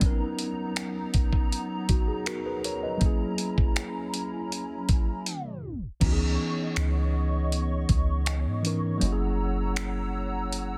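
A dense, heavily limited modern master with digital ambience and a faint mains hum frames this dreamy, smooth contemporary R&B excerpt. A worn, slightly out-of-tune tine electric piano sits up front over a hollow, flute-like pad warbling through ensemble chorus, while a gritty, sampler-style drum kit with a thumpy kick, finger snaps, hi-hat and a soft-clipped snare drives the beat. A drum fill and tape stop arrive at 5.3 seconds, and at 6.0 seconds a round, deep 808-style bass enters as the harmony moves to C#m9.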